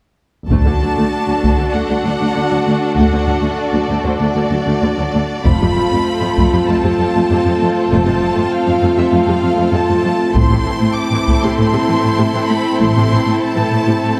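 At 0.5 seconds a full orchestral texture opens this heroic, triumphant film-score passage, cut from a longer piece and moving at a steady 98 BPM in straight 4/4 over a harmony that shifts from D to F to A minor. Warm, expressive violins carry the melody up high with close, lush vibrato, while a second violin line sits smoothly underneath and the rich-toned violas fill in the accompaniment. Mellow French horns hold sustained chords with a smooth top, and a focused cello section anchors the bass, joined by a double bass section that sits distant in the background. A taiko ensemble struck with heavy sticks booms in a live room at the opening, drops away, then returns from 5.4 to 11.6 seconds. A wet concert-hall reverb gives the ensemble a broad, cinematic sense of space.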